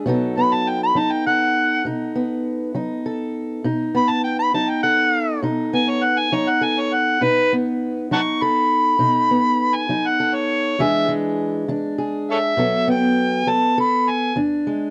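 An overdriven, amplified harmonica carries the melody from 0.4 seconds, gritty and up front, with vibrato, tongue slaps and a jazz-inflected solo voice that ranges from A4 to C#6. Beneath it, a fingerpicked steel-string acoustic guitar of the parlour type plays accompaniment from the opening moment until 14.9 seconds, its tone dark and boxy, with audible finger squeak. This is a soulful, rollicking slice of acoustic country blues in 12/8 at 67 beats per minute, counted in dotted quarters with a straight feel and tuned slightly sharp at A4 = 441 Hz. The harmony sits on B7 for most of the passage before moving to E7 at 10.8 seconds, touching B5 and returning to E7. The recording is dry and close, in the manner of a 1970s studio, with a small room ambience around the two instruments, and the passage is cut from a longer piece.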